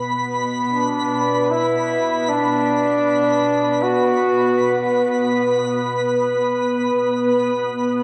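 Reflective and spacious, this ambient fragment in free time rests on a calm, nasal organ-like drone with ensemble chorus, up front, and a low, earthy cello section bowed with light vibrato that fades in across the full 8.0 seconds, while a sparkling granular texture glints high above under shimmer reverb and a clear, classical-style solo flugelhorn carries the melody from 0.7 to 5.0 seconds through cassette tape, analog delay and shimmer, all set in a small, wet room with a homemade cassette sound.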